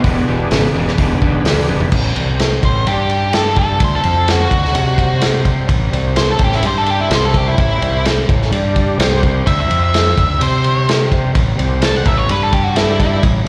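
Blues rock power trio with a southern rock streak, this raunchy, swaggering excerpt of a longer piece moves at 127 BPM in a straight 4/4, heard as a live gig through the venue's PA with recital-hall reverb, small room ambience and a faint mains hum. A bright, double-tracked crunchy guitar riff opens over an E7#9 chord until 1.9 s, while a round, fuzzed fingered bass and a dark-cymballed vintage kit with a tight kick sit up front, and a thick, gritty tonewheel organ holds sustained chords in the background through its slow rotary speaker and chorus vibrato. After a drum fill at 1.7 s, an octave-fuzz lead guitar enters at 2.6 s for a dark, distorted solo coloured by slapback echo and analog delay, running over a progression of power chords around C5, G5 and F5.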